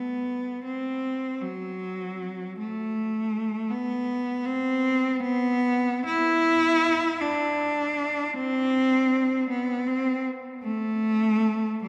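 A rich, focused solo cello sings up front in free time, with bowed vibrato and a smooth top moving between F#3 and E4, settling into C major from 6.0 s in a lyrical, serene classical passage cut from a longer piece and bathed in a wet cathedral reverb.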